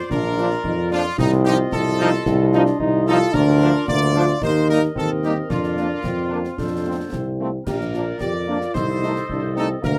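Heard through close, detailed microphones with light reverb, this proud, festive military-style march for wind band in 2/4 is cut from a longer piece. A clear, tight trumpet section carries the melody with light vibrato over a second line from a soft-attack woodwind section and a warm euphonium sitting in the background, while an up-front tuba with vibrato anchors the bass and the snare drum, bass drum and dark clash cymbals sound close and dry. From 0.4 seconds, a very quiet, distant and roomy French horn section adds accompaniment and a close-miked trombone section holds sustained chords, both stopping at 9.7 seconds.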